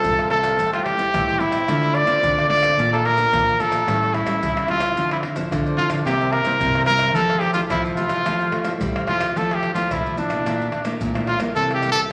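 Set in a wet, spacious studio reverb, this joyful, playful samba and choro fragment is led by a bright, up-front trumpet singing a jazz-style solo melody with vibrato over chords such as Am7, Dm7 and Bbmaj7. Beneath it, a fingerpicked classical nylon-string guitar comps while a second, woody nylon-string guitar with old strings carries the bass in the background, and a very quiet, crisp cavaquinho adds mellow picked accompaniment until 9.3 s. Maracas, pandeiro, tamborim and a deep surdo played with soft hands keep a live-room pulse throughout, and at 9.4 s the harmony moves to Fmaj7 and Bbmaj7#11 before settling on C7.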